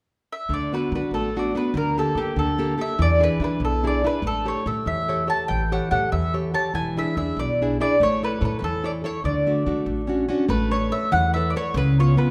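This Italian folk serenade in D major moves at a lively 96 BPM in a straight 6/8, with a sunny, lively mood. It is cut from a longer piece. A mellow, up-front mandolin picks the melody on its double strings, entering at 0.3 s. A fingerpicked nylon-string guitar with a warm, deep classical tone accompanies from 0.5 s, and a dark, thumpy pizzicato upright bass with steel strings and a woody body anchors the low end. The harmony travels from D6 through E7 and A7 to a Dmaj7, then shifts near 10.5 s toward Aadd9 and a closing C#7. A wet recital hall reverb surrounds the trio, and the tuning sits slightly low at A4 = 438 Hz.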